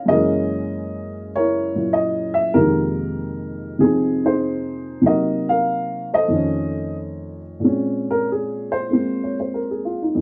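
A dark, woody upright piano plays alone from the start, setting a moody, cool solo jazz mood in F minor at 96 BPM with a swung, rubato feel and tuning at A4 = 442 Hz. Its boxy, up-front tone moves through Gb13, Fm11, Cm7b5 and F7b13 in light reverb, spanning F2 to F5. At 7.6 seconds the piece shifts to a new section on Bbm9, where the piano takes a solo until this extract from a longer piece ends at 10.2 seconds.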